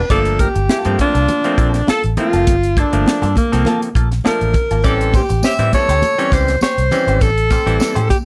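Funky and hypnotic, this short funk cut from a longer piece moves at 101 BPM in a straight 4/4, tuned slightly under standard pitch to A4 = 438 Hz. A breathy, close-miked alto saxophone sits up front with the jazz-style melody, its vibrato giving the lead a warm glow, while a mellow tenor saxophone traces a soft, whispered second line with subtone, scooped notes and a gentle attack until about 6.9 seconds. Underneath, a dry, polished drum kit with a high-tuned snare and tight kick pairs with a dark, foam-muted fingered electric bass that sounds round and punchy through its amp. A stringy, percussive clav plays clean stabs through a combo amp, and a hollow-body jazz guitar adds compressed, picked accompaniment coloured by wah. Thin-skinned, high-tuned congas sit very quietly in the mix, a jingly tambourine joins in the background at 4.8 seconds as the harmony moves from Gm9 to A7#9, and the whole mix stays dry, with little reverb.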